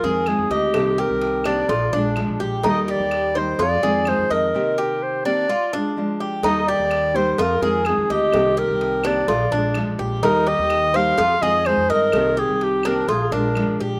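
A straight 4/4 groove at 126 BPM carries this sunny, relaxed Cuban son and guajira excerpt in Eb major, where an up-front, warm, classical-style clarinet sings the melody over metallic, double-strung tres arpeggios touched with slapback echo, bright fingerpicked nylon-string guitar, and dark, thumpy pizzicato upright bass, while woody claves sit in the background beside a tight, high-tuned, distant cowbell with its own slapback, all in a dry outdoor recording that reaches a short break at 4.5 s.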